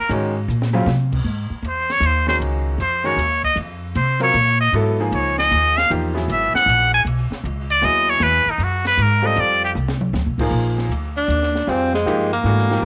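Cut from a longer piece, this home cassette recording has light reverb and a small-room ambience, with tape coloring the trumpet, piano, drums and saxophone. It is modal jazz in a swung three, searching and hypnotic, moving through lush suspended and major-ninth chords. A trumpet with a straight mute carries the melody up front as a solo, its tone nasal and brilliant with vibrato and a smooth top, until it drops out at 9.7 seconds. Underneath, a bright upright piano sits present and polished with long sustain, while a pizzicato upright bass on gut strings sounds woody, thumpy and up front. A compact cocktail kit stays dry, with dark cymbals, a high-tuned snare and a punchy kick, and adds short drum fills near the start and again before the final passage. At 11.2 seconds a clear tenor saxophone takes over the solo in a jazz style, with vibrato and scooped notes.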